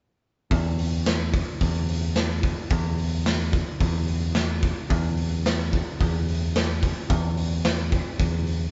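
A raw garage drum kit drives a straight 4/4 groove with punchy kick, medium-tuned snare and hi-hat, its saturated, gritty sound pumping in a bright stone room, while an overdriven picked electric bass, dark and round, sits up front beside it from 0.5 to 8.6 seconds. This short cut from a longer psychedelic rock piece feels kaleidoscopic and trippy, played live by the band in one room. It carries a light reverb and the dulled top end of cassette tape.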